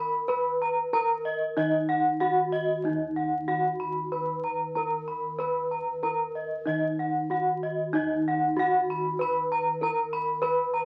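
Hypnotic and shimmering, this Balinese gamelan passage in Eb pelog moves at a straight 94 BPM in 4/4, cut from a longer piece and heard through the crackle of a very old 78 rpm record with a short, wet studio reverb. Up front, one bronze metallophone struck with a wooden mallet carries the melody while a second, more brilliant and airy under a horn mallet, plays arpeggios an octave higher, both ringing with the beating shimmer of paired tuning. Beneath them, bossed gongs hit with padded beaters supply a soft, round, mellow bass throughout all 10.8 seconds.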